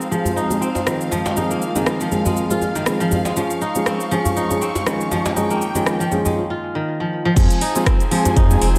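A ringing, crisp fingerpicked kora sits up front in this driving afro house excerpt at 120 BPM in F minor, its arpeggios filtered, echoed with delay and pumping against the sidechain alongside muted, mellow felt piano stabs and lush bowed strings sustaining chords over Fm and Db. A lightly swung afro-pop kit with metallic hats, cabasa, rim clicks and crash sits in studio reverb beside a live-room djembe played with hard hands and metal rattles. After a break from 6.4 s, the drop at 7.4 s brings in a round sine sub bass and an up-front electronic kick as the harmony returns to Fm.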